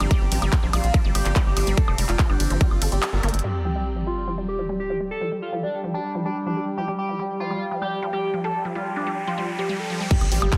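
A psychedelic trance drop in G minor bursts in at 144 BPM in a straight 4/4, with a tight, dark sequencer bass, a bright, detuned unison pluck riff carrying digital delay, and big-room dance drums of handclaps, hi-hat, ride, crash and woodblock, all driving and intense. Almost at once a punchy, up-front kick lands alongside a gritty, screaming lead whose guitar-like distortion, vibrato, chorus, phaser and delay give the melody its bite. Behind them an overtone-sweeping drone holds resonant sustained chords, and an ethereal pad adds a mellow, airy haze, both pumping with the sidechain in the background. The kick drops out at 3.0 seconds for a band accent and a drum fill, and from 3.4 seconds the bass and drums fall away, leaving the synths under a filter sweep while a sub drop, riser and impact build the tension. Bass, kick and drums return with a final impact at 10.1 seconds, all in a dense, heavily limited modern master with light digital ambience.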